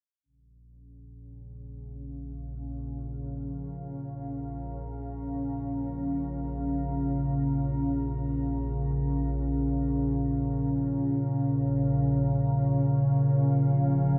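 Floating in free, unmetered time, this dark ambient drone moves by breath rather than beat, cavernous and ominous in mood. An analog drone arrives first at 1.0 seconds, low and up front: a vintage, detuned blend of sawtooth, pulse and triangle waves, wave-folded and treated with chorus, its warbling, evolving tone mellow and slow to bloom. At 2.0 seconds a deep, moody pad joins higher up, holding sustained chords built from unison sawtooths, sine and a sub octave, colored by ring modulation and wrapped in chorus, its own reverb and a shimmer reverb. Both parts fade in gradually from 0.3 seconds and linger with long releases, the pad set quieter than the drone. A huge, wet reverb with a long tail lends the dark, warm production a vast depth, and the passage is cut from a longer piece.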